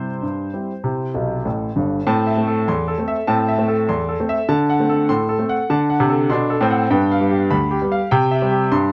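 Ragtime piano at 99 BPM in 2/4 with a straight feel, this short excerpt from a longer piece has a lively, playful mood. A solo grand piano carries the whole passage, its tone warm and present with long sustain, sitting up front in a moderate studio ambience. The part spans a broad range from G1 up to C6. Around 1.1 seconds the piano plays a fill that leads into a new section at 2.1 seconds. The harmony moves from C through Am, D7 and G7 before settling back on C at 8.1 seconds.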